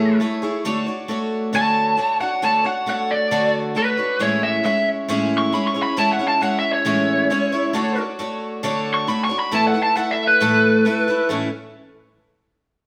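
An overdriven electric lead guitar, dark and gritty through a small cranked amp, carries the melody up front from the start, soloing between B4 and C#6 until 11.3 seconds. Beneath it, a picked twelve-string acoustic guitar supplies bright, shimmering, octave-doubled accompaniment, also placed close to the listener and ringing on until 11.5 seconds. This is a rock piece in A major at 135 BPM in a straight 4/4, with a nostalgic mood as the harmony moves between Amaj7 and Dmaj7 before settling through Asus2 to a plain A. The two guitars sound like a band playing live in one room, wrapped in a wet stone-room reverb that lends the sound depth. Cut from a longer piece, it closes with a brief new section after the solo ends.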